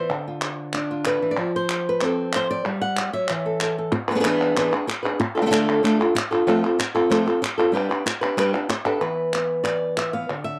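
A bright, fingerpicked flamenco guitar with a fresh-string sparkle leads this short, fiery excerpt, carrying the melody from 0.0 s to 10.6 s across a range from D3 to F#5. Crisp palmas hand claps sit up front beside it, with the acoustic character of a live room, running from 0.1 s to 10.5 s. The tempo is a quick 188 BPM in a straight 4/4, and the mood is passionate throughout. The harmony moves from Dm and F through Em9 and Esus4 to E7, then passes again through Dm, F and G before settling on E5 in the closing section. The sound is dry and close, in the manner of a 1970s studio recording, touched with light reverb, and the piece is cut from a longer performance.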